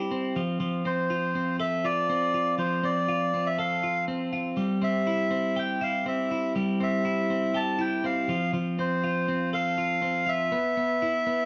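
A bright, twangy twelve-string electric guitar opens this short indie pop clip with clean, compressed arpeggios over F and C chords, and a reedy, breathy melodica enters up front at 0.9 seconds carrying the melody through an analog delay. At 121 BPM in a straight 4/4, the mood feels bittersweet and restless, closing on an E5 chord at 10.5 seconds. The gritty cassette-tape sound stays fairly dry under a moderate studio reverb, with tuning set slightly low at A4 = 439 Hz.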